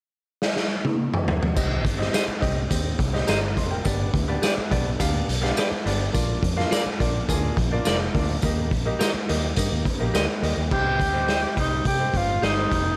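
The recording sits in light reverb and studio ambience, and this excerpt is cut from a longer, uptempo 1960s-style soul piece with a passionate, driving mood in a straight 4/4. A raw garage drum kit opens with a fill at 0.4 seconds, its lo-fi, saturated, gritty and muffled tone, punchy kick, dark cymbals and rolled-off top sitting up front in a bright stone room. At 1.6 seconds the band enters over a minor-key progression: a dark, round, foam-muted electric bass, a brilliant concert grand piano with deep bass and short sustain, and a jingly tambourine in the background. A twangy, slightly broken-up electric guitar adds picked stabs from farther back. At 10.7 seconds a breathy tenor saxophone takes the melody up front, with whispered vibrato, scooped notes, a soft attack and slapback echo giving it an intimate, pop-style solo voice.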